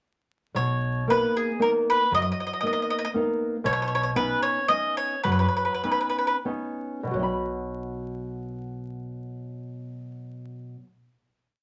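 The recording sits in a wet club reverb with vinyl crackle and a dulled top end, giving it a worn, intimate glow. This short, complete Italian folk serenade in 3/4 feels lively and romantic. A bowl-back mandolin carries the melody up front, its warm, double-string picking shaping motif-based sentence phrases until it stops at 6.4 seconds. Beneath it, a dark, full-bodied nylon-string guitar plays thumb-plucked bass notes and oompah chord figures, joined by a woody, growly pizzicato upright bass on roots and fifths on the main beats. The harmony moves from Bmaj7 to Badd9 as the tempo slows from 3.7 seconds, and at 7.1 seconds the guitar and bass settle onto a closing Bsus2 chord.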